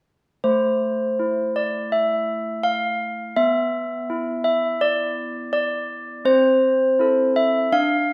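A solo set of handbells opens at 0.4 seconds, ringing out a solemn, wintry classical tune in A minor at an unhurried 83 BPM in a straight 4/4. The bells sit up front with a bright, airy, bell-like clarity, their hard clappers giving each strike a crisp edge. Their range spans A3 to F5, and the harmony moves from A minor to E5 over B at 3.4 seconds, then to A minor over C at 6.3 seconds. A moderate reverb, like that of a scoring stage, lets the tones hang in the air around them. This short passage, cut from a longer piece, closes when the bells stop at 8.1 seconds.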